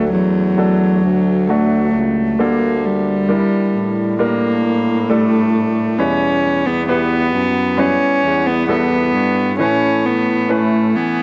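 Tender and heartfelt, this short pop passage, cut from a longer piece, unfolds at an unhurried, straight pace. A single bowed cello carries the melody close and up front, its warm, airy, nasal, gut-string tone coloured by a cassette tape effect, with a reedy, period character. A bright concert grand piano supplies polished, brilliant accompaniment with deep bass and short sustain. A breathy baritone saxophone holds down the bass in a whispered, intimate jazz style, with subtone, vibrato and a soft attack. A barely audible electronic impact sounds from 0.2 to 2.4 seconds, while the harmony moves from D through Gmadd9/D and Em to Aadd9. Moderate studio reverb surrounds the home cassette recording.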